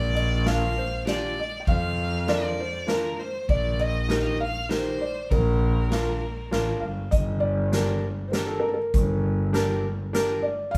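This short excerpt of klezmer, cut from a longer piece, opens with a felt-muted upright piano carrying the melody in a soft, intimate voice, its action noise audible, over a bowed double bass with vibrato and an intense, up-front edge. A lone violin, bright yet distant, adds a second line with vibrato until 6.8 seconds, while a street-band drum kit of hi-hat, kick, snare and ride joins at 0.2 seconds with an airy big-room sound and a boomy kick. A second upright piano, clear and woody with long sustain, provides accompaniment from 0.5 seconds. At a moderate 99 BPM in a straight 3/4, the music sits in Bb major before turning to G minor at 7.1 seconds, deepening its bittersweet, soulful mood. The band plays live together in one room with a moderate studio reverb, and the tuning sits slightly low at A4 = 437 Hz.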